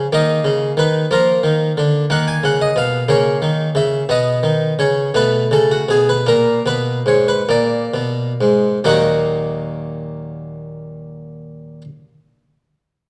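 A wet recital hall reverb surrounds this dark, warm recording, a short excerpt cut from a longer baroque-style suite movement in Eb minor. A solo harpsichord of the Italian style sits up front, its plucked tone brilliant and doubled by octave strings, ranging from Eb2 up to Ab5. The music moves in a flowing, introspective 6/8 with rubato, counted in dotted quarters between 42 and 62 BPM, and it slows down from 3.1 to 8.9 seconds. The harmony drifts through colorful chords such as Badd9, Amaj13/B and Abmadd9 before settling on Eb minor as a new section begins at 8.9 seconds. The harpsichord stops playing at 11.8 seconds.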